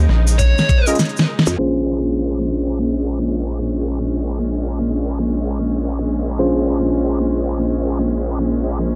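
Glitch hop in a playful, funky mood, cut from a longer piece and heard through a dry, gritty hardware sound with vinyl crackle and a low-pass filter over digital ambience. A clear, bowed studio string section holds sustained chords throughout, pumping under sidechain and low-pass filtering, with a filter sweep on the strings from 1.6 seconds as the harmony moves from Bbm7 to Bbm9. The opening brings a rubbery, bouncy square bass, a knocking electronic kick, and a pop drum kit with fat snare, crisp hats, rim click and crash. A grainy cabasa sits in the background, and a brief, distorted high-gain lead guitar line passes through analog delay, while a drum fill and band accent carry the first section. A bright, clean tine electric piano enters at 0.9 seconds with pumping stabs colored by analog delay. From 1.5 seconds an aggressive, wobbling growl bass sits up front, detuned and tube-saturated with chorus and a formant filter, driving the second section to the close.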